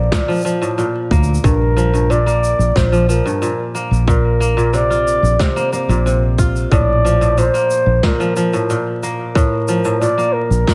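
A straight 4/4 pulse at 91 BPM is set by a tight electronic kick, with a distant, roomy brushed snare and shaker sitting further back. This pastoral folktronica excerpt in Bb major moves through Bbmaj7, Gm7/Bb and Fsus4/Bb before settling on Bbmaj7 again at 6.7 seconds. A foam-muted, up-front fingered electric bass holds the low end between Bb1 and D2, while a crisp, ringing kora plays fingerpicked arpeggios through tape echo. Over them a breathy, dark flugelhorn carries the melody between Bb4 and D5, with soft attacks, scooped notes and light vibrato in an intimate, jazz-style solo voice, also touched by tape echo. Studio reverb and a layer of vinyl crackle give the whole a warm, vintage haze.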